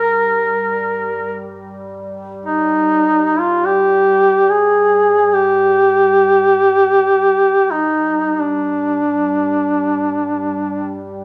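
In free time, a mournful Caucasian folk lament in G phrygian unfolds over about 11 seconds, with a warm, up-front solo duduk singing a longing, vibrato-laden melody between D4 and Bb4 above a deep, warbling, detuned ambient pad that holds a dark, chorused drone on G3 through to 11.2 s, all set in a light small-room reverb and cut from a longer piece.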